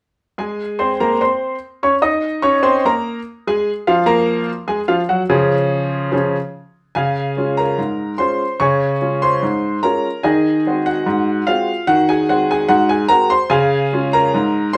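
A clear, woody upright piano enters alone at 0.4 s with a jaunty, playful ragtime strain in Db major at 73 BPM in a straight 2/4, its intimate tone carrying audible action noise and long sustain in a wet studio reverb, before a second section opens at 7.0 s and moves through an Ab7 at 10.2 s back to Db in this excerpt from a longer piece.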